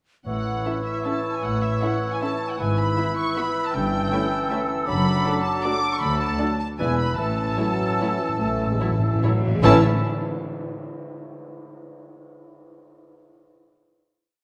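A rubato 3/4 lilt between 138 and 169 BPM carries this sweeping, elegant orchestral ballroom waltz in A major, where a veiled, con sordino violin section sings the melody over a softer second violin line, after-beat chords from lush violas and a mellow French horn section, a dark cello and double bass foundation, sustained chords from an airy flute, clear clarinet, roomy oboe and warm bassoon, and timpani that returns with a fill at 7.2 s as cymbal swells and tam-tam strokes lead into a final chord at 9.6 s in a moderate concert-hall reverb.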